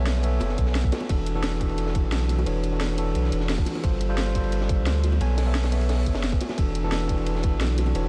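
An overdriven tine electric piano and a deep, round sine sub bass open this excerpt of lush, rolling liquid drum and bass together at 0.0 seconds, moving at 175 BPM in 4/4 with a straight feel in E dorian. The piano sits up front with a gritty combo-amp tone, softened by a low-pass filter and trailed by delay, carrying suspended ninth chords from B9sus4 through E9sus4 and G9sus4 before returning to B9sus4 and E9sus4. Beneath it, the mellow sub bass holds sustained notes with a fast attack, also placed up front. Two kits stack the groove: an electronic, layered kit with a cracking snare and hi-hat, and a dark, saturated acoustic breakbeat kit with a high-tuned snare, smooth dark cymbals and a rolled-off top, its hats, snare, cymbals and room all high-pass filtered. A tight electronic kick arrives at 0.6 seconds, and very quiet, low-tuned bongos, compressed and saturated, add a faint percussive layer from 0.4 seconds, all within a light reverb.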